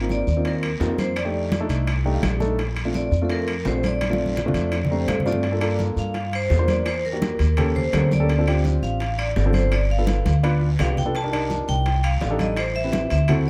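Sophisticated and sunny, this short cut from a longer Afro-Cuban jazz piece moves at 168 BPM in a straight 4/4, opening in Bb major before turning to G minor at 5.4 s. A dark, mellow grand piano sits up front with short-sustained chords over rich extended harmonies and adds fills early on, while a pizzicato upright bass with steel strings gives a woody, warm foundation, also up front. The melody comes from a bright, metallic vibraphone struck with medium hard mallets and colored by a fast motor vibrato. Behind them, ringing, medium-tuned congas played with soft hands sit in the background. They are joined by round, low-tuned bongos that are very quiet and distant, metal-shell timbales in a large room, a raspy, compressed and saturated guiro, and distant claves entering at 0.6 s. A drum fill leads into the second section, and the recording pairs light reverb with close, detailed microphones.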